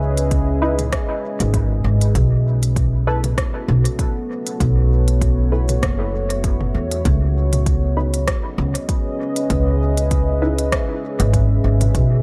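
A deep, dark pad of warbling sawtooth chords opens this hazy ambient dub excerpt alongside a woody upright bass, played pizzicato on steel strings and sitting up front. An electronic drum kit with crisp hats, rim clicks and toms joins almost at once, its tape-tinged sound carried on a dub echo in a small room, while a layered, overdriven electronic kick adds weight beneath. At 0.6 seconds a muted, detuned chord stab arrives, mellow and decaying after its filtered pluck, treated with analog chorus and its own dub echo. The pad's vintage, slow-attack chords, thickened with chorus and a sub octave, move from C#m9 to B7sus4 before returning to C#m9 at 7.1 seconds. The stab drops out at 10.6 seconds, leaving the pad, bass and drums to carry the moody, gently swung groove under a light reverb.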